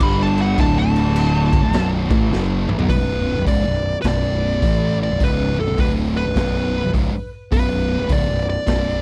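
A dry recording with little reverb, this short cut from a longer stoner and doom metal piece feels sludgy and heavy at 104 BPM in 4/4, with a swung eighth-note feel in B minor. A dark, compressed fuzz lead guitar carries the melody with tape echo throughout, and it opens with a solo that runs to 2.9 seconds. Beneath it, a thick, double-tracked fuzz guitar grinds out the riff for the whole 9 seconds, while a second, background fuzz guitar also plays a riff only until 2.9 seconds. A bright, growly picked bass with overdrive and tube saturation sits low under the guitars. The raw garage drum kit sounds gritty and boomy in a small, pumping room with a rolled-off top, and a drum fill from 2.3 seconds leads out of the opening passage over chords moving from G through D to Bm.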